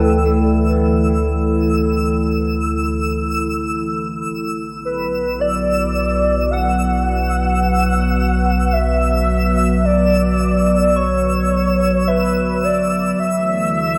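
A slow, straight 4/4 pulse carries this serene, weightless ambient fragment, cut from a longer piece, as it drifts from Dsus2 to Bm and back to Dsus2 near 13.2 seconds. A warbling, nostalgic tape-like pad sits up front with detuned, wave-folded chords and reverb, while a velvety sawtooth lead sings the melody with vibrato, chorus and analog delay above a round, deep analog bass. In the background, a mellow FM bell plays gentle arpeggios, and a twinkling granular texture adds octave-up shimmer, all bathed in an echo-heavy mix with a wet spring reverb.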